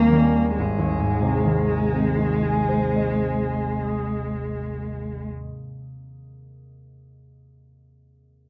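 An expressive bowed cello sings a tender melody with vibrato and portamento over bright, ringing thumb-plucked concert harp in this serene romantic classical fragment in Ab major, drifting in a rubato 3/4 at 45 BPM through light reverb and a dark production, the cello falling silent at 5.2 seconds while the harp rings on to 6.0 seconds.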